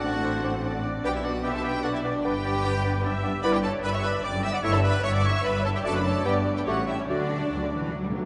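Awash in a vast, echoing cathedral reverb that dulls the highest treble, this spirited, graceful fragment of a classical-period symphonic movement in triple time with a rubato feel sets a bowed violin melody over a second violin line, airy flutes, a clear oboe, a mellow clarinet and a soft bassoon, while violas fill the background, dark French horns hold chords, tight trumpets punctuate with stabs, cellos add expressive portamento to the bass beside focused double basses, and timpani sound briefly at the start before returning for a fill at 7.1 seconds.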